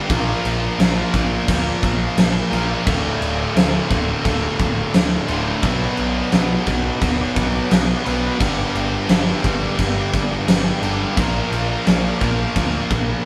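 Quiet-loud alternative rock at 87 BPM, this brooding, cathartic excerpt stacks two thick fuzz guitars, one dark and one bright, with a biting, double-tracked overdriven guitar riffing in the background over a growly overdriven picked bass and a big acoustic kit with a fat snare and punchy kick up front, while a very quiet, lush vintage string machine holds soft-attack chorused chords through a Bb, Dm, Bm, G progression in a small, live-sounding room.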